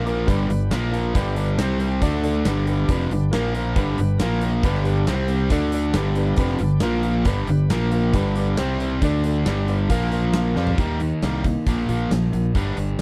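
A cranked stack guitar and an overdriven semi-hollow guitar drive this sunny, driving classic rock excerpt at 137 BPM with a picked riff, the stack guitar bright and up front while the hollow-body sits behind it, over a bright, direct fingered bass and a gated 80s kit with a tight kick and airy stone-room snare. A woody upright piano with audible action noise accompanies in the background, adding fills, and a very quiet, shouting tonewheel organ holds chords through a slow rotary speaker over a G, Bb5, C5, D5 progression. At 10.6 seconds a drum fill sets up a shift to Eb, with the piano and organ dropping out as the guitars, bass and drums drive on.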